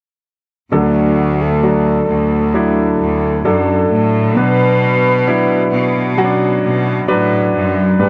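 A breathy flugelhorn carries the melody in a melancholic, emotional pop piece in B minor, its dark, jazz-style solo tone shaped by light vibrato, a soft attack, scooped notes and a smooth top between F#4 and B4. A clear concert grand piano sits up front as accompaniment, ranging from G2 to B4 with deep bass and an open sound. Beneath it, a studio cello section supplies the bass line from D2 to B2, bowed as an ensemble with a biting, nasal, earthy character that seems distant despite being placed up front. All three parts play together from 0.7 to 8.1 seconds at a slow 66 BPM in straight 4/4, tuned to A4 = 445 Hz. The harmony moves from D to B minor at 4.4 seconds, and light reverb with small room ambience frames this short section cut from a longer piece.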